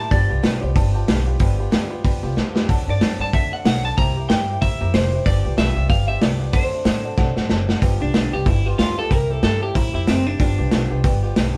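Rockabilly at 187 BPM in G mixolydian, rollicking and upbeat with a swung feel, this excerpt from a longer piece has a twangy, slightly broken-up electric guitar carrying the melody (briefly at the start, then from 2.9 to 11.0 seconds) over a growly pizzicato upright bass, a boxy picked swing-style acoustic guitar, a dark, mellow upright piano sitting in the background and a muffled, up-front vintage drum kit with a tight kick and fills at 2.4 and 7.2 seconds, all played live in one small room with moderate reverb as the chords move through G7, D7 and C7.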